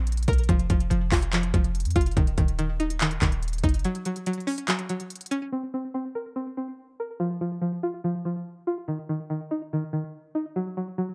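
A twangy, string-like resonator pluck with chorus and slapback echo plays eerie arpeggios over a deep, boomy 808-style bass and a half-time trap kit of crisp hi-hats, handclaps and a hard-clipped kick in this dark, dry hip hop and trap excerpt, until the bass stops at 3.8 seconds and the drums at 5.4, leaving the bright pluck alone through 11.1 seconds.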